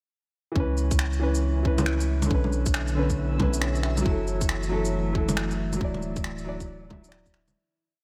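A woody, vintage upright piano with a diffuse ambient delay opens this rainy, wistful future garage piece at 0.5 s, playing held chords with syncopated pushes and pumping to the sidechain alongside a round, deep sub bass, over a muffled two-step kick and a skittering, shuffled beat of shaker, finger snaps and low bongo. A reversed, dreamy swelling texture then holds a bright high note in the background, and a warbly, lo-fi, tape-like pad with chorus enters at 2.8 s with dark, slowly shifting chords, all set in a light digital ambience before a fade-out from 5.2 s.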